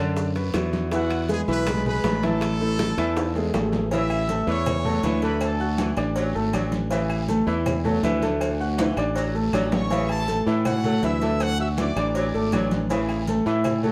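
A straight four-beat salsa groove drives this festive, danceable clip from a longer piece. The percussion sits in the background: damped, hard-handed congas, tight high-tuned bongos with cowbell, ringing metal-shell timbales with agogo bells, woody close claves, a raspy guiro and grainy maracas, with drum fills at 3.2 and 8.8 seconds. Up front, a polished grand piano carries the accompaniment while a growly, direct fingered electric bass anchors the low end. A bright trumpet section with light vibrato takes the melody from 0.9 seconds, and a distant, roomy saxophone section enters with a second line at 3.9 seconds. The harmony moves through Bm, Eadd9 and A5 before settling into a festive alternation of A and D, all framed by a moderate studio reverb.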